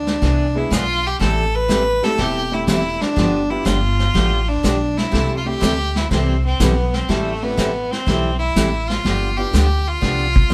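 Recorded as a band playing live in one room with moderate studio reverb, this cheerful, playful western swing clip sets a clear, bowed fiddle melody with light vibrato up front over a woody, thumpy pizzicato upright bass and a roomy vintage brush kit with a punchy kick, while a bright, picked dreadnought acoustic guitar and a brilliant, short-sustained upright piano, entering at 0.6 s, fill out the swung country accompaniment.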